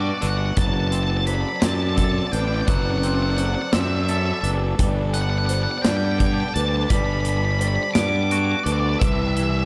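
A dark, octave-fuzz lead guitar carries the melody from the opening of this brooding, melancholic post-rock passage in 6/8, over a growly, overdriven fingered bass up front and a clear, bowed string section holding sustained chords in the background, moving from Gmaj7 through D7/F# and back before reaching Cmaj7. A big rock drum kit with a punchy kick joins at 0.2 seconds, while a twangy, scooped clean electric guitar and a felt-muted upright piano, mellow and intimate with audible action noise and lush chorus, weave quiet arpeggios beneath. Soaked in lush hall reverb, the mix feels dreamy, a short cut from a longer piece.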